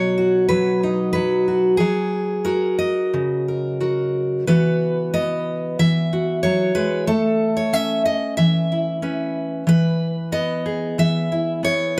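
In a loose, rubato 4/4, this gentle, pastoral folk fragment from a longer piece features a solo fingerpicked steel-string jumbo acoustic guitar, bright and full-bodied with audible finger squeak, sitting up front in light reverb as it drifts from B through F#add9, Eadd9 and Aadd9 before settling on E.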